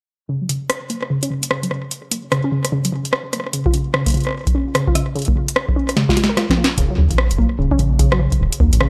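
IDM at 148 BPM in Eb minor, glitchy and intricate, with a swung sixteenth feel: a warbly, dusty synth pluck plays arpeggios from 0.3 seconds, nasal and detuned, with chorus, tape echo and 12-bit sampler grit, as a filter sweep runs across it while a booming analog drum machine brings crisp snare, rim clicks and metallic hats up front with overdrive and delay. An overdriven electronic kick drum enters at 3.7 seconds as the harmony moves to a rootless Bbm, and a drum fill leads into the second section at 6.8 seconds, where a rubbery, hollow square bass arrives under an Eb7 chord. The digital ambience carries lossy compression artefacts, and the excerpt is cut from a longer piece.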